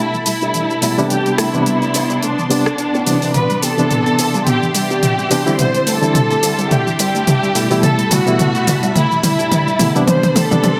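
This sunny, feel-good nu-disco excerpt in G major, at 107 BPM with a light 16th-note swing, opens on a dark, expressive violin section carrying the melody through delay, over a reedy, barky electric piano with fast tremolo, a lush detuned pad with chorus and phaser, and a very quiet analog pluck playing arpeggios. A bright, envelope-filtered picked bass sits in the background while an up-front, layered pop drum kit of hi-hat, rim click, shaker and toms builds throughout, breaking into a long fill from 3.3 seconds. The chords move from G69 through Cmaj9 and D9sus4 back to G69, with light reverb and a faint mains hum in the room.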